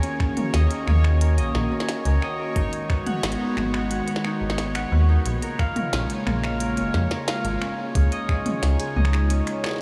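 IDM at 89 BPM in Eb minor, glitchy and cerebral, this excerpt sets a bright fingerpicked Celtic harp's ringing arpeggios through analog delay over a hollow, flute-like pad with chorus and sidechain pumping, a metallic up-front FM bass entering at 0.5 seconds, a gritty, thumpy sampler-style kick, a tape-warm glitchy kit of finger snaps, clicky hats, tiny snare and toms, and a bubbling resonant filter texture in the background, all soaked in a dreamy huge ambient reverb as the chords move from Ebm7 through Abm7 and Bbm7 to Dbadd9.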